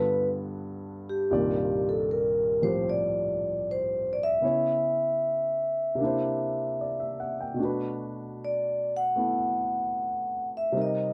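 Intimate and tender, this short jazz ballad moves at 76 BPM in 4/4 with a swing on the eighth notes. A vibraphone played with medium mallets carries the melody throughout, its tone dark, smooth and ringing, with a metallic edge and the motor off. A grand piano accompanies it from start to finish, spanning a broad range from deep bass notes up into the treble with a warm sound. Both instruments sit up front, caught by close, detailed microphones and a light touch of reverb, with the vibraphone a little louder than the piano. The harmony drifts through rich chords, opening on G7 and moving through Cm11, C#m7 and C9 before arriving on Bm7 near 7.6 seconds, and the passage is cut from a longer piece.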